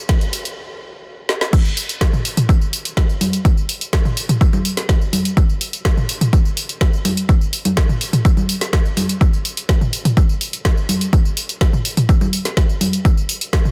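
This house excerpt at 125 BPM opens with a short build-up in which the punchy, up-front electronic kick and a deep house kit of crash, dark hi-hats, woody snare and tambourine set a straight 4/4 pulse before a stop from 0.6 seconds and a drum fill at 1.3 seconds. At 1.5 seconds the drop arrives, bringing in an overdriven layer of electronic woodblock, toms and congas whose percussion and toms pump under sidechain compression. The kit sits well behind the kick in level, its hats, snare, cymbals, percussion and room sound thinned with high-pass filtering, while the kick stays the loudest element. Every part has a layered, produced character, and the kick and kit carry the feel of being re-recorded in a small room. With little reverb and a dense, heavily limited modern master, the groove feels expansive and uplifting through to its cut at 13.7 seconds.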